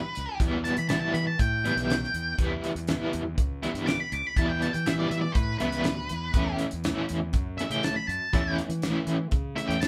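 A straight 4/4 beat from a dry, damped 70s drum kit with a fat snare and tight kick drives this trippy, mysterious psychedelic rock fragment, where a picked octave-fuzz lead guitar solos from the first moment over a double-tracked, crunchy overdriven guitar riff with tremolo and a round, fuzzy fingered electric bass, the guitars and bass dark in tone and the band heard playing together in a small room as the harmony shifts from Em to A/E at 6.4 seconds.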